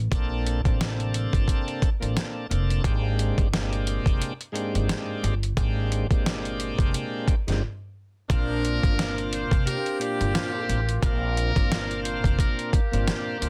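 Densely limited and lightly reverberant, this soulful, nostalgic boom-bap hip-hop fragment swings on a gritty, pitched-down sampler drum kit with a thumpy kick and medium-tuned snare sitting up front, while a woody pizzicato upright bass and a bright, shouting tonewheel organ with key click, light overdrive, slow rotary speaker and cassette-tape coloring carry the opening chords. After a short break at 7.6 seconds, the second section at 8.3 seconds brings a buzzy, thin metal-muted trumpet melody with light vibrato and tape echo, a soft, flute-like second organ holding sustained chords in the background through slow rotary. A tight, close-miked saxophone section adds warm jazz stabs with tape echo until 10.6 seconds.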